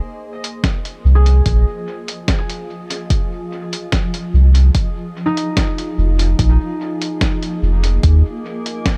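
Ambient dub at 73 BPM in F minor, hazy and meditative, resting on a single Fm7 chord as a cloudy, evolving granular pad fades in from the start with its built-in reverb. A muffled, pitched-down sampler-style kit of hi-hat and snare with dub echo arrives at 0.4 seconds, a deep, tape-warm electronic kick sits up front from 0.6 seconds, and a round sine sub bass takes the low end from 1.0 to 8.2 seconds. A mellow, thumb-plucked concert harp rings out arpeggios through tape echo from 1.2 to 8.2 seconds, all in a dry mix carrying a faint mains hum in this fragment of a longer piece.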